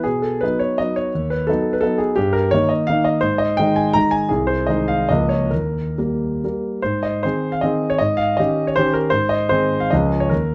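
Rustic and proud, this romantic classical dance in triple time moves in 3/4 with dotted rhythms and a flexible rubato, its tempo ranging between 121 and 180 BPM in A flat major. A solo concert grand piano carries the whole piece, intimate and up front with deep bass, a natural tone and audible action noise, spanning C2 to Bb5 under light reverb and close, detailed microphones. After an opening passage, a new section begins at 6.8 seconds and runs to the close of this 10.5-second cut from a longer work.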